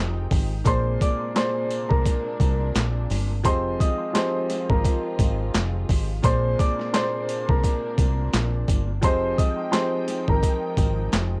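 Boom-bap hip-hop in F dorian, this dark, tough fragment of a longer piece rides a swung 86 BPM groove, cut to tape in a dry, homespun room. An overdriven, pitched-down sampler kit sits up front with a thumpy kick, high-tuned snare, hi-hat and handclaps, gritty and compressed, entering at 0.3 seconds alongside faint, jingly sleigh bells tucked far back. Beneath it, a deep, round fingered electric bass with tube saturation holds the low end, its foam-muted tone sitting close and heavy. A baby grand piano with long sustain plays the accompaniment through the tape's hazy filtering, while a distant, lush string section bows dark sustained chords with vibrato behind everything. From 0.7 seconds a mellow, woody upright piano carries the melody, its vintage tone trailed by analog delay as the harmony moves between Fm9 and Bb9.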